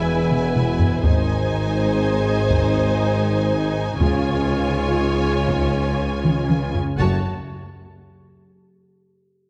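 A triple-metre pulse pounded out by a compressed, saturated taiko ensemble, with heavy-stick fills at 0.3 and 6.2 seconds, drives this dramatic, relentless cut from an epic orchestral film score, where a dark, woody violin section sings the melody above a second violin line with a soft attack, intense violas, and, further back, distant, roomy French horns and tight trombones holding sustained chords, while a focused double bass section, a mellow tuba and warm, expressive cellos anchor the bass, round, very quiet timpani touch in from 4.0 seconds, and lush bowed vibrato blooms in a moderate scoring-stage reverb.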